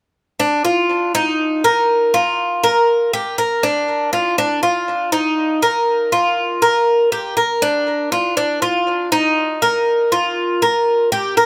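A straight 4/4 pulse at 120 BPM carries this short Latin excerpt, which feels warm and nostalgic. A Cuban tres, tuned to A4 = 441 Hz, plays arpeggios between D4 and Bb4 from 0.4 to 11.5 seconds. Its acoustic tone is bright and metallic, and the double strings, some of them octave-doubled, give each picked note a shimmering, layered edge. A tape echo trails behind the tres, which sits up front in the mix. Close, detailed microphones capture the instrument inside a moderate studio reverb with an RT60 of 0.5 seconds, so the room stays present yet compact.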